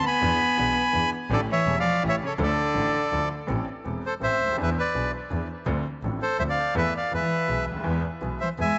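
Tango in a rubato triple metre, tense and passionate, this fragment of a longer piece sets a reedy, up-front bandoneon with tape echo on the melody over a brilliant baby grand piano whose action noise is audible and whose notes decay quickly. A focused, bowed cello with vibrato carries a second line, falls silent at 3.3 seconds and returns at 7.2 seconds, while an earthy bowed double bass with airy tone and light vibrato anchors the low end. The harmony shifts from dominant-seventh tension into darker minor colours, and a moderate echo-chamber reverb with softened highs gives the close-miked players an intimate, shadowy room.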